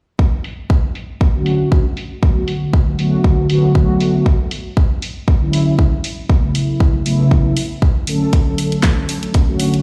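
A punchy, layered electronic kick drives this sunny, feel-good nu-disco cut at 118 BPM in 4/4, with a light 55% swing on the sixteenths. From 0.4 s, a produced pop drum kit adds hi-hat and a fat snare, both softened by low-pass filtering and set back beneath the up-front kick. At 1.3 s a mellow synth brass part comes in as accompaniment: brassy and round, built from detuned sawtooth tones with a fast attack, sustained notes, vibrato and a filter sweep. Its warm, dark tone is treated with chorus and tape echo as it carries the chords Dmaj7, Bm7, E13 and A69 before returning to Dmaj7. A filter sweep on an analog polysynth runs through the whole fragment, and the mix sits in light digital ambience with a stone-room reverb, as if played on a big sound system in a bare room.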